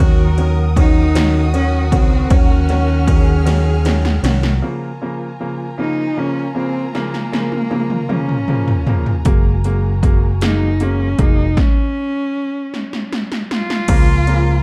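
In a six-eight pulse, this tender, romantic pop ballad is carried by a focused, bowed solo cello singing the melody with vibrato over a bright, worn, slightly detuned upright piano and lush, dark sustained chords from a studio string section. A smooth symphonic violin section adds a soft second line in the background, dropping out at 4.6 seconds and returning at 13.9, while a round, amped fingered electric bass sits up front, pausing after 4.6 seconds and coming back at 9.3. Overdriven 80s electronic pad drums with a punchy kick, metallic hats and gated reverb on the snare and toms play several fills and a stop, all within a dark, reverberant production of this excerpt.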